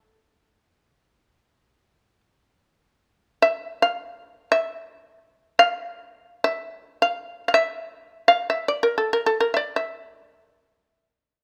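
A solo shamisen, up front and close, plays alone from 0.0 to 11.4 seconds in this brief cut from a longer piece of austere, calm Japanese traditional chamber music in free time, its plucked, percussive, buzzing fretless tone sitting between A4 and F5 in light reverb.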